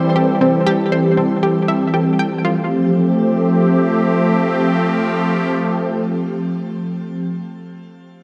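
An airy, detuned sawtooth pad with a noise layer and a filter swell holds sustained chords up front from the start until 7.3 s, its chorus giving this cosmic, luminous excerpt of sequencer-driven ambient space music its glow as the harmony moves from C to Fadd9. A round, bright analog pluck with a sub octave plays a short riff alongside it, thrown into analog delay and shimmer reverb. Underneath, a dark, pulsing gated triangle texture sits in the background, tempo-synced and wrapped in reverb. Both drop away before 3 s, leaving the pad alone in an echo-heavy mix with a long spring-reverb tail.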